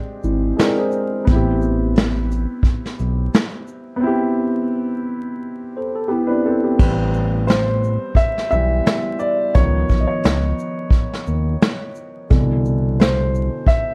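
A woody, intimate upright piano with audible action noise and cassette-tape coloring opens this hazy, melancholic lo-fi hip hop excerpt in A minor at 87 BPM with a light 16th-note swing, joined at 0.2 s by a nasal, gliding synth bass with vibrato and portamento, a vintage brush kit with dark cymbals and a punchy kick, and brief mellow tine electric piano phrases through analog delay, before the piano takes a solo from 6.8 s over chords moving through Am7, C#9 and Cmaj9, set in a dark production with vinyl crackle and moderate studio reverb.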